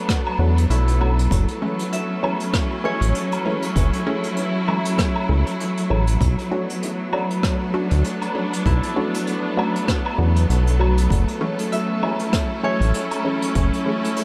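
Ambient dub at 98 BPM in B minor with a gentle 16th-note swing, deep and meditative, cut from a longer piece and moving between Bm7 and F#m7 over a light small-room reverb. A lush, up-front symphonic string section holds bowed chords with smooth vibrato, while a round, dark analog bass with tube saturation sits prominently beneath an overdriven electronic kick and a vintage brush kit of hi-hat, rim click and woodblock with a rolled-off top and dub echo. In the background, a nasal filtered chord stab colored by phaser and dub echo enters at 0.4 seconds, and a bright, ringing Celtic harp adds echoed arpeggios from 0.7 seconds.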